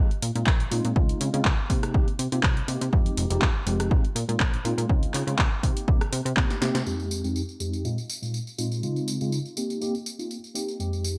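Bright, lightly reverberant 1980s-style digital production frames this funky, groovy filtered disco house excerpt at 122 BPM in 4/4, swung on the 16ths, with a filter sweep across the opening and chords cycling through Bb7sus4, Dbmaj7, Cm7 and Fm7. A mellow, clean tine electric piano sits up front with phaser, sidechain pumping and a low-pass filter, over a plucky sawtooth-and-pulse analog bass with a fast attack and decaying notes, a punchy, tape-warm electronic kick, and an analog drum machine of handclaps, hi-hat, rim click, snare and tambourine with gated reverb and pumping hats. The kick stops at 6.5 seconds as a drum fill begins, and the bass drops out at 6.8 seconds, just after a band accent. That leaves the electric piano, now under its own filter sweep from 6.9 seconds, with the drum machine.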